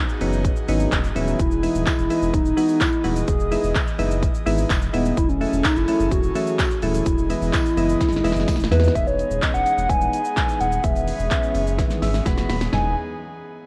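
Heard through a worn, warbling cassette-tape sheen with drifting pitch and light reverb, this euphoric, upbeat dance-pop fragment moves at 127 BPM in E major. Soft, round electric-piano-like synth keys with chorus and tremolo and an airy, breathy pad with chorus both pulse with sidechain pumping from the opening. A layered electronic pop kit sits up front with a punchy kick, a fat snare, hi-hat, shaker, handclaps and toms, while a thick, saturated sub bass holds sustained low notes that also pump. At 1.4 seconds a hollow, woody clarinet-like synth lead takes the melody, mellow and touched with vibrato, chorus and digital delay, as the harmony moves from C#m11 to Emaj7. A very quiet, jingly tambourine joins close and dry at 1.9 seconds, and a drum fill leads into a new section at 9.0 seconds, with drums and keys filling together near the end.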